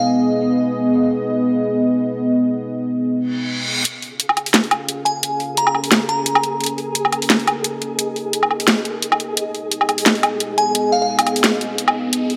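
An overdriven electronic drum kit pushes up front from 3.9 seconds, its cracking snare and bright hi-hats layered with woodblock in a swung half-time drum and bass groove that feels heavy and tense. Beneath it, a dark analog pad holds sustained chords throughout this cut from a longer piece, its detuned sawtooth and triangle tones, sub octave, chorus and 12-bit sampler grit giving a deep, moody body while a filter sweep works on it during the build-up. A glassy FM synth bell sounds brief, crystalline melody fragments with a warbling chorus and dub echo, bright and quickly decaying. A reverse cymbal at 3.3 seconds leads into the drums, and a riser returns near the close at 10.7 seconds. Soft in the background, a flickering granular texture holds a single grainy note with its own reverb, all set in a lush hall.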